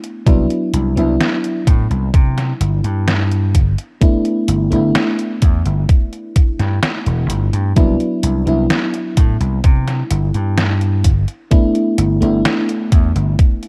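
Nostalgic and dreamy, this vaporwave fragment from a longer piece drifts at an unhurried, straight pace. A mellow FM electric piano carries the accompaniment throughout, its soft, round, dark tone sitting up front with a faint noise layer, subtle chorus and analog delay. A detuned 8-bit digital drum machine supplies overdriven hi-hat and a medium-tuned snare with a small-room character, while an electronic kick drum, thumpy, overdriven and prominent, enters at 0.3 seconds. A vintage slap bass joins at the same moment, punchy and amped, reaching deep into its low register. The harmony sways between Cmaj9#11 and G6, and the whole mix has a dry, cassette-tape sheen.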